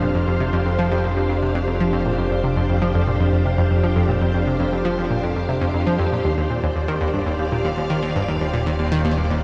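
A cassette-toned plate reverb frames this hypnotic, mysterious fragment of sequencer-driven space music in 4/4, where a bright, up-front analog pluck with ring modulation, chorus and delay repeats its riff over lush, vintage string-machine chords and a fat, detuned analog bass with a moving notch, all moving from Fsus2 to Eb at 6.3 seconds.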